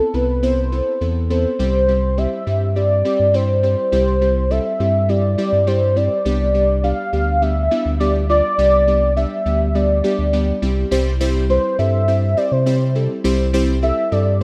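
Carefree, euphoric dance-pop at 103 BPM in C major, this excerpt from a longer piece sets a velvety, detuned sawtooth synth lead with vibrato and tape echo over airy, glassy digital keys with a noise layer and filter sweep, both shimmering with chorus, while a deep, full sub bass doubled at the octave anchors harmonies moving from Amadd9/C to C at 1.6 seconds and G/C at 6.3 seconds, all bathed in a lush hall reverb within a rough home-demo mix.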